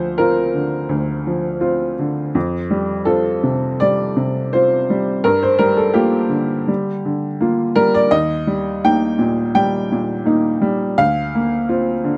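The rhythm moves in a loose, rubato 4/4 around 84 BPM, giving this short neoclassical minimalist piano fragment in Bb major an unhurried, breathing pulse. A solo upright piano carries the whole 12.2 seconds, ranging from D2 up to G5, and its tone is woody and slightly boxy, with a short sustain that keeps each chord distinct. The harmony drifts through Bbadd9/D, Fadd9, Gm7 and Eb before settling back on Bbadd9/D at 11.0 seconds, and those added ninths lend a soft, open colour to the tender, peaceful mood. Close, detailed microphones place the instrument up front, and the dry room adds little reverb, so the sound stays intimate and plainly clear. Cut from a longer piece, the passage feels like a moment of reflection.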